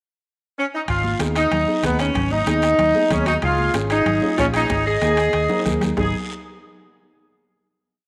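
A clear, tight saxophone section opens with a hook-based pickup at 0.6 s, and at 0.9 s a driving, fiery cumbia kicks in at 188 BPM in G# dorian, with round, amped fingered electric bass, soft-beater bombo, bright high-tuned congas, raspy guiro and very quiet ringing timbales, and from 1.2 s a dark, woody upright piano adds rhythmic triad chords in the background. A growling, gritty clarinet joins at 3.1 s with a harmony line mostly in sixths, scooped notes and light vibrato. A drum fill leads into the closing G#m chord, and the mix sits in a wet echo-chamber reverb over small room ambience.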